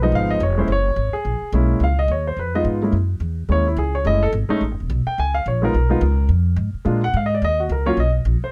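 A warm, intimate concert grand piano and a woody, pizzicato upright bass on steel strings start together in this playful, swinging 8.5-second jazz fragment at 214 BPM in Db mixolydian, with the piano soloing on the melody with audible action noise, deep bass and long sustain while both instruments sit up front in a close, detailed and nearly dry sound.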